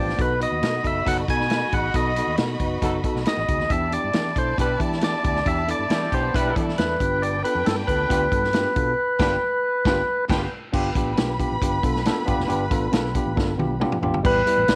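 Urgent and driving, this uptempo 1960s-style soul excerpt at 137 BPM in 4/4 puts a percussive, lightly overdriven tonewheel organ with key click up front on the melody until 10.3 seconds, over a lush bowed violin section and a distant, roomy jazz-style horn section on second lines, a worn, slightly out-of-tune tine electric piano, a bright fretless bass with ensemble chorus, a twangy, slightly broken-up guitar riff in the background, and a punchy vintage drum kit with dark cymbals, moving through B7, Em7 and G7 to a band accent from 9.0 seconds and a drum fill landing on Em/A at 14.2 seconds.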